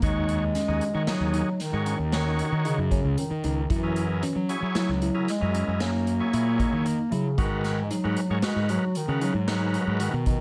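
A mellow bass clarinet carries the melody with a soft attack and smooth top, played in a classical style over this driving, intricate progressive instrumental in 7/4 at 114 BPM, in F# mixolydian and cut from a longer piece. Beneath it, an up-front fuzz bass growls dark and round, a gritty tonewheel organ adds thick, percussive chords with chorus vibrato, and a bright tine electric piano spins phased arpeggios in the background. A street-band drum kit of hi-hat, boomy kick and medium-tuned snare sits in an airy, polished big-room sound, while the chords move through D#m7, F#9 and G#m9 across the 10.4 seconds.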